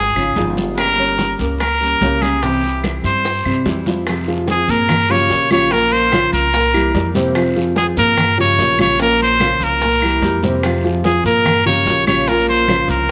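Nostalgic yet danceable, this short cut from a longer Cuban son and guajira piece moves at 146 BPM in a straight 4/4, settling into F harmonic minor from 4.1 seconds after an opening pass over Dbadd9, Gdim and C. A muted trumpet with a straight mute carries the melody up front, its tone brilliant and nasal with a soft attack in a jazz-inflected solo voice. Beneath it, a dark concert grand piano spins mellow, boxy arpeggios with deep bass, while a fingerpicked nylon-string guitar adds full-bodied accompaniment and a pizzicato upright bass gives a thumpy, woody foundation. The percussion sits in the background: damped, thick-skinned congas, tight high-tuned bongos struck with hard hands, raspy guiro, grainy maracas and very quiet, distant claves, with a drum fill from 3.2 to 4.1 seconds leading into the cycling Fm, Gm7b5, Bbm and C7 progression. A moderate plate reverb lends the whole mix a gentle sense of space.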